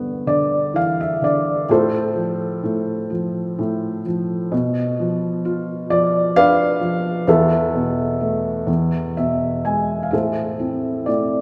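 A felt-muted upright piano carries this brief, wistful classical fragment alone, its soft, mellow tone sitting intimate and up front while a wet concert-hall reverb blooms around it. In a slow, rubato 6/8 at 42 BPM in A minor, the harmony moves from G6 through F/A, Bdim and Esus4 to E, where a felt piano fill at 8.7 seconds leads into a resolution on A minor at 10.1 seconds. Cut from a longer piece, it has a melancholic air.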